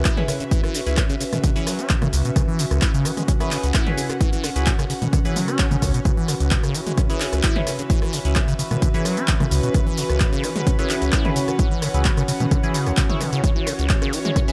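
A squelchy, resonant sawtooth acid bass riff with phaser and delay opens this hypnotic, raw acid house excerpt at 130 BPM in C# minor, alongside a tape-warm analog drum machine of handclaps, hi-hat, rim click, shaker and toms, and a breathy, detuned pad that pumps with chorus over a C#m7 chord. A punchy electronic kick sits up front, while nasal, band-passed chord stabs cut through with phaser and delay. An electronic swell sounds in the background at 5.3 seconds, and from 6.1 seconds a reedy chamber string section with gut-string tone and 12-bit sampler grit sustains chords behind everything under light reverb.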